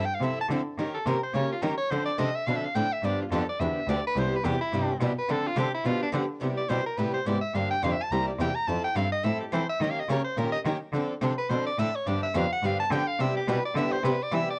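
A bright, punchy soprano saxophone with vibrato solos up front across this playful, charming jazz manouche excerpt, swinging at 212 BPM in C major over changes that move from Fmaj7 through Eb7, Dm7 and G7 to Cmaj7. Beneath it, a bowed cello with a nasal, gut-string period tone carries the bass from 0.2 s, while a boxy parlour steel-string guitar with fresh strings and audible finger squeak picks the accompaniment, and a second picked swing guitar sits in the background. Plate reverb colours the saxophone and both guitars, and the moderate booth ambience of a cassette home recording frames the performance.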